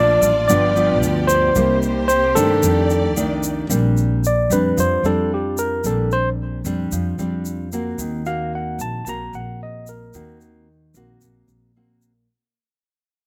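Recorded outdoors with a light reverb, this bossa nova excerpt is cut from a longer piece. It sits at 112 BPM in 4/4 with a straight feel in Bb major, and its mood is romantic and easygoing. Up front, a bright, barky tine electric piano carries the melody through a combo amp, and from 3.7 s it takes a clean solo as the music fades out. A full-bodied, fingerpicked nylon-string guitar with a deep classical tone and a slapback echo supplies the accompaniment, and a woody, thumpy pizzicato upright bass on steel strings holds the low end. A lush symphonic string section adds soft-attack bowed chords with expressive vibrato for the opening 3.7 s, while a grainy, close and dry egg shaker ticks along from 0.2 s onward. The harmony moves through G7, Cm7 and F13 to Bb69, and later turns to Ebm6.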